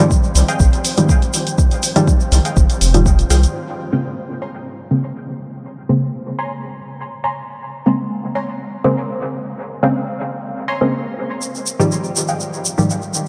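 A dreamy, reverb-soaked mix with a cathedral-like tail of 6.4 seconds opens this deep, nocturnal dub techno cut from a longer piece, set at 122 BPM in 4/4 with a light swing on the sixteenths in Bb minor. In the opening bars, a tape-toned electronic kick sits up front beside a round, nasal analog bass with tube saturation and sidechain pumping, while a softer electronic hi-hat and a grainy, close tube shaker fill in the top. A muted, detuned sawtooth chord stab in the low register carries chorus, phaser and dub echo throughout. Above it, a higher filtered stab riff plucks with phaser, subtle chorus, pumping and echo. A breathy, wind-like tuned noise layer drifts in the background until the drums and bass fall away at about 3.5 seconds, when the harmony shifts from Fm9 to Bbm9 and the two stab parts carry on alone. The shaker returns at 11.4 seconds as the chord moves back to Fm9.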